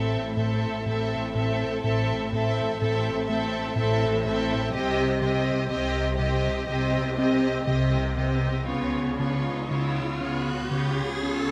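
A straight 4/4 pulse carries this ominous, tense cinematic excerpt, where a lush, expressive violin section sings the melody above a rich, smooth chamber violin second line and a focused, distant viola accompaniment, while a dark synth bass riff of sawtooth and square waves with ring modulation moves over a soft-attack double bass section and a cello section in the background; the bowed strings carry vibrato under light reverb and close, detailed miking, and an electronic riser enters at 7.8 s as the chords pass from Am through Cm to C#7.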